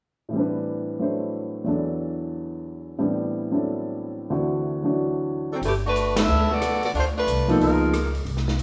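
Heard in a wet, roomy studio reverb with the band playing live together, this brassy, swinging big band jazz cut in G major at 182 BPM opens with a natural-toned baby grand piano comping alone in short-sustained chords, before a bright, vibrato-laden saxophone section takes the melody up front at 5.5 seconds, joined at 5.6 seconds by a woody pizzicato upright bass and an airy, polished drum kit on hi-hat, ride, rim click and snare, with the full band striking an accent at 6.1 seconds.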